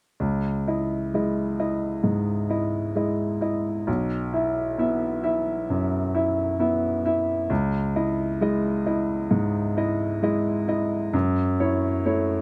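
A clear, boxy baby grand piano sits up front in this short fragment of a longer classical piece, playing an accompaniment from 0.2 to 12.4 seconds across a range from B1 to E5. At a rubato 66 BPM in 4/4 and C# minor, tuned to A4 = 438 Hz, it moves through C#madd9, Bsus4 and back to C#madd9 before closing on F#m7 at 11.1 seconds, with a longing, reflective mood. Close, detailed microphones and little reverb give the sound an intimate, dry presence.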